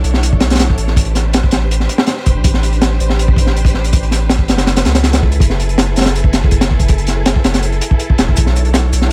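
Crunchy, punchy breakbeat drums with a high-tuned snare and a dusky, rolled-off top drive this dark, atmospheric drum and bass excerpt at 162 BPM, while a thick, tube-saturated sub bass sits up front beneath soft, silky string-machine chords, colored by ensemble chorus and 12-bit sampler grit, that drift through Bm11, Am11 and F#m11 in a small room, with a very quiet shaker and snare slipping in at 8.4 seconds.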